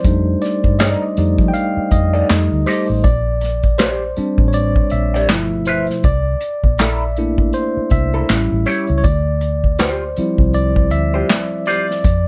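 Light reverb gives this short, sultry neo-soul R&B excerpt a soulful sheen. A clean, warm tine electric piano sits up front and solos throughout over rich extended chords such as F13, Bb69 and Dm11, while an airy, polished, up-front acoustic kit in a small room lays down a swung groove of punchy kick, medium-tuned snare played with bundle sticks, hi-hat and handclaps. Beneath it a dark, round, foam-muted vintage bass anchors the low end, and from 0.8 s a slightly broken-up, lo-fi electric guitar through a small old amp adds a compressed, picked second line coloured by wah.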